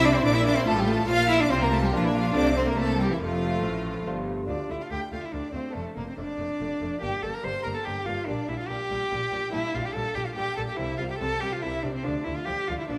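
Brilliant and lively, this baroque-style concerto movement at 143 BPM in 3/4 features a rich, vibrato-laden solo cello up front, carrying the melody above a bowed chamber orchestra, turning from F major to D minor at 4.5 s. One violin section sings the upper melody in the background with a focused tone, while a second, close and expressive violin section plays another line. A delicate, fingerpicked nylon-string lute and an even, lightly vibrato viola section fill in the accompaniment, over a bass of a distant, soft-attacked double bass section and a cello section with expressive portamento, all in a moderate scoring-stage reverb in this cut from a longer piece.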